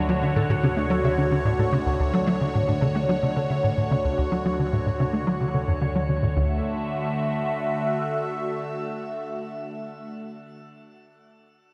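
A bright, swirling analog pad sits up front in this cosmic, expansive piece of ambient, sequencer-driven space music, its detuned sawtooth chords sustaining with a soft attack and long release through phaser, chorus and shimmer reverb. Beneath it, a punchy, saturated sequencer bass drives a tight riff in straight 4/4, its wave-folded tone shaped by a filter pluck and moving notch and colored with ensemble chorus, cassette tape and delay. In the background, a warbling, lo-fi pluck traces mellow arpeggios with a noise layer and filter sweep, dressed in chorus, tape, delay and shimmer reverb, and this arpeggio sound fades out across the opening section. The harmony holds on D before shifting to Dadd9 at 6.4 seconds, and the bass and pluck stop at 6.6 seconds, leaving the pad alone until 10.1 seconds. A lush hall reverb wraps the whole excerpt, which is cut from a longer piece.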